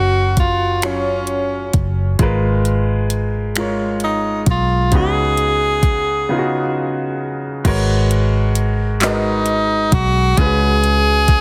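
This slow R&B groove moves in a straight 6/8 at 44 beats per minute, counted in dotted quarters, with a late-night, sultry mood. A clear tenor saxophone carries the jazz-style solo melody up front, its subtone voice trailed by tape echo. Beside it, a clear grand piano plays the accompaniment up front, while a vintage fingered electric bass, foam-muted, dark and round, holds the low end. An electronic, produced drum kit enters at 0.4 seconds with a soft kick, metallic hi-hat, finger snaps, handclaps and crash cymbal, and the snare carries a touch of soft clipping. The harmony drifts through lush extended chords such as F#maj7 and C#9sus4, pauses for a break at 6.3 seconds, then settles into G# minor from 7.6 seconds. Light reverb and a dense, heavily limited modern master give the sound a polished finish, and the passage is cut from a longer piece.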